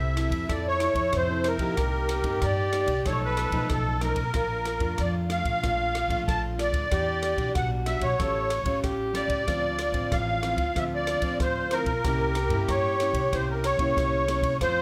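A bittersweet, yearning samba and choro passage, cut from a longer piece, carries a musette accordion melody that sits up front with a reedy, shimmering, vintage tone, while a breathy tenor saxophone adds a mellow second line with light vibrato and scooped notes. Beneath them, a bright, fingerpicked nylon-string guitar with audible finger squeak supplies accompaniment. A woody, thumpy pizzicato upright bass on gut strings and an open jazz drum kit with a boomy kick, ride cymbal and rim click complete the band. Extended chords such as Fmaj7, B7#11 and C7b9 move beneath the ensemble, all set in a moderate large studio reverb.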